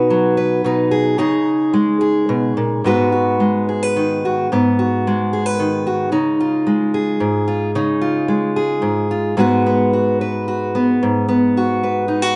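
Folk piece for solo fingerpicked steel-string acoustic guitar in 3/4, intimate and melancholic in mood, cut from a longer work. The guitar sits up front with a full-bodied, auditorium tone, moving through chords such as C#sus2, G#m7 and C#add9 across its short span. A moderate reverb gives the sound a sense of a generous room, while the top end stays soft and rounded.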